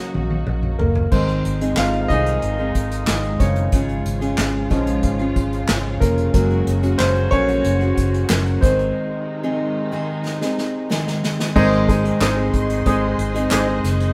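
A straight 4/4 pulse at 92 BPM drives this anthemic, warm stretch of piano-driven pop, cut from a longer piece and tuned slightly flat with A4 at 437 Hz. The grand piano sits up front with a natural tone, carrying a solo line from the opening through to 11.6 s, while an unplugged drum kit, played with bundle sticks, rolls through an opening fill of punchy kick, medium-tuned snare, toms, hi-hat, handclaps and dark cymbals. A round, foam-muted electric bass holds the low end, and from 1.1 s a picked dreadnought acoustic guitar with old strings adds a woody, full-bodied riff. Behind them a rich string section, distant and bowed with vibrato, sustains chords moving from Gb/Bb through Ab, Db/Ab and Gbadd9. A break arrives at 8.9 s, with another drum fill at 10.3 s leading into the closing passage, and the whole band sounds like it is playing live together in a stone room with a moderate reverb.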